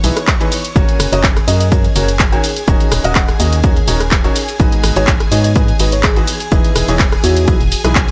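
A bright, worn grand piano riff opens this soulful, energetic piano house excerpt at 125 BPM in G# minor, joined from the start by an organ-like FM bass with a hollow, dark, percussive tone and a punchy analog drum machine playing handclaps, hi-hat, ride cymbal, rim click and shaker with a lightly swung 16th-note feel. An overdriven electronic kick drum enters at 0.3 seconds, punchy and layered, carrying the heaviest weight in the mix. Behind them, a vintage string machine holds shimmering, full-bodied violin chords with ensemble chorus, pumping against the kick alongside the piano and bass. A bell-like FM electric piano sparkles in the background with a mellow melody, coloured by chorus, tremolo and digital delay. The harmony moves from Emaj7 through F#, D#m7 and G#m7 before returning to Emaj7, and the dry sound, with little reverb, keeps the parts crisp.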